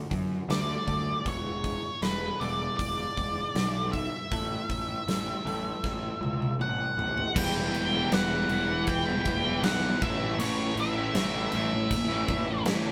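Quiet-loud alternative rock at 79 BPM in E dorian, angsty and cathartic, this excerpt opens with a bright, twangy twelve-string electric guitar picking clean arpeggios in the background, while an overdriven fuzz bass, a huge up-front arena drum kit with punchy kick and bright cymbals, and a dark octave-fuzz lead guitar carrying the melody enter almost at once; after a drum fill from 5.8 s, the twelve-string drops out at 7.3 s as two distorted fuzz guitars, one bright and compressed, the other thick and dark, push a riff over Em and A in a live room with moderate reverb.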